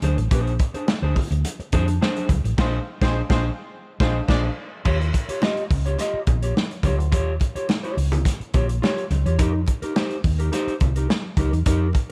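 A crunchy, gritty breakbeat drum kit with dark cymbals and a tight kick opens this energetic funk groove at 106 BPM alongside a round, hollow-body fingered electric bass, a clean, dark electric guitar with warbly pitch drift, and very quiet ringing congas, while a distant, roomy horn section in octave doubling adds a mellow accent from 2.6 to 4.4 seconds before the chords move from Bb9 to Eb9 at 4.9 seconds and on to F9sus4.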